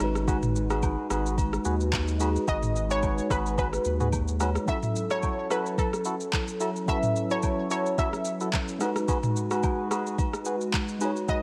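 A deep, hypnotic amapiano excerpt at 109 BPM with a light swing opens on a soft-kicked, overdriven electronic drum kit of handclaps, rim clicks, shaker and toms, a thick saturated sub bass that stops at 4.6 s, a tine electric piano with medium tremolo, a hollow, airy pad pumping in the background, and vintage agogo bells and woodblock, before a nasal, wave-folded organ stab with chorus and delay enters at 0.3 s and a round, warbling analog pluck melody with a filter sweep joins at 2.5 s over G#m7 and F#m7 chords in a light digital ambience.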